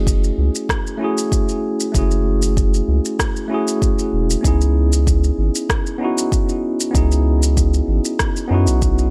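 Lightly reverberant, this relaxed, wistful sunset chillout fragment at 96 BPM in F# minor sets a clean, up-front tine electric piano, roughened by vintage 12-bit sampler grit and delay, over a round, dark analog bass, a deep electronic kick, and a layered, tape-coloured electronic shaker and rim click re-recorded in a small room, while a very quiet, ringing, thumb-plucked Celtic harp arpeggiates only until 1.8 seconds, as the harmony moves from F#m9 to C#m9 at 4.4 seconds.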